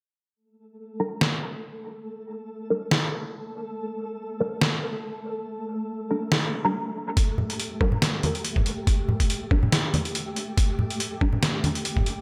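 A half-time groove at 141 BPM in 4/4, with swung 16ths, carries this dark, heavy deep dubstep excerpt, cut from a longer piece. A sampler-style trip hop kit of hi-hat and a medium-tuned snare sits up front, compressed, pitched down and gritty, with the weight of a large room around it. From 7.2 s a thumpy electronic kick joins, and soon after, low-tuned acoustic congas with a thick skin add close, warm percussion. Throughout, muted, full-bodied sawtooth chord stabs snap in with a fast attack and short decay, coloured by phaser, ensemble chorus and dub echo. Alongside them, a grainy, flickering texture of detuned triangle tones rises in from 0.8 s with a slow attack and long release, bathed in its own reverb. The whole mix feels dreamy, soaked in a moderate plate reverb and digital ambience.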